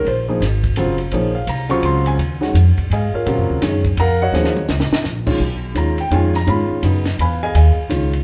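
Grand piano and woody upright bass open this short cut from a longer modal jazz piece in Eb dorian, searching and cool at 168 BPM in 3/4 with swung eighths. Up front, the piano accompanies with a warm, short sustain over Ebm11, moving to G#m6 at 5.4 seconds, while the steel-strung bass, played pizzicato, also sits prominently. A compact cocktail kit, dry with dark cymbals, a high-tuned snare and a punchy kick, adds a fill from 4.3 to 5.0 seconds, and the band sounds live in one room, wrapped in a wet large-studio reverb.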